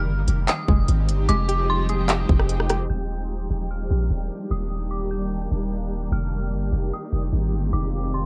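Hard-clipped kicks and crisp hats from an up-front electronic trap kit, joined by handclaps and rim clicks, drive the opening of this dreamy, blissful cloud-rap fragment in a half-time feel before dropping out at 2.8 s. Beneath them, a deep, mellow 808-style bass with a pure sine tone holds long, decaying notes prominently throughout. A shimmering, ethereal pad sustains chords moving from Fm9 to Ebmaj7 and back, its octave-up sparkle and granular texture colored by chorus, phaser, built-in reverb and sidechain pumping. Above it, a dark, eerie bell with an inharmonic FM tone plays a detuned high melody through chorus, tremolo, low-pass filter and delay. A twangy, string-like resonator pluck adds background arpeggios with a filter sweep until 2.9 s. The whole mix carries light digital ambience and a worn cassette character with warbly pitch drift.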